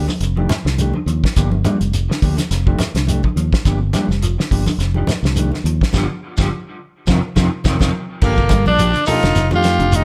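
Intense and funky, this afrobeat cut from a longer piece rides a swung sixteenth-note groove in four, built on a warm soul drum kit with a fat snare, tight kick and dark cymbals sitting up front beside a round, punchy fingered electric bass. Two dark electric guitars weave through it, one slightly broken-up and picked in arpeggios through ensemble chorus and tape echo, the other clean and fingered in short stabs. A grainy shekere sits close while bright, compressed congas played with soft hands stay in the background. The chords move between F13 and Gm7 before the band hits a string of accents on bare power chords, capped by a drum fill that leads into a new section at 8.2 seconds. There a raspy, gritty tenor saxophone takes the melody up front, shadowed by a warm trumpet with vibrato in the background and a barky, reedy electric piano with overdrive and fast tremolo. A light reverb wraps the whole band.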